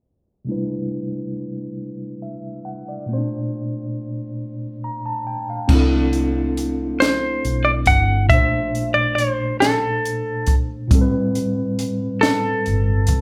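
A mellow tine electric piano opens at 0.4 s, sounding through its built-in speakers and sitting up front as it lays down Cmaj13 and Bbmaj9 chords while a filter sweep runs over this opening stretch. The mood is late-night and sultry, a slow six-eight R&B groove at 46 BPM counted in dotted quarters, cut from a longer piece. At 5.7 s the compact cocktail drum kit and a vintage muted fingered electric bass come in together: the kit is dry and acoustic, with dark cymbals, a high-tuned snare and a punchy kick heard up front, and the bass is amped, foam-muted and round, staying low between G1 and C2. A clean, compressed semi-hollow electric guitar takes the melody from 7.0 s, its fingered hollow-body tone warm and close, moving over Cmaj13, Bbmaj9 and finally Am9. The band plays live in one room with a moderate large studio reverb and a low-pass filter that softens the overall sound.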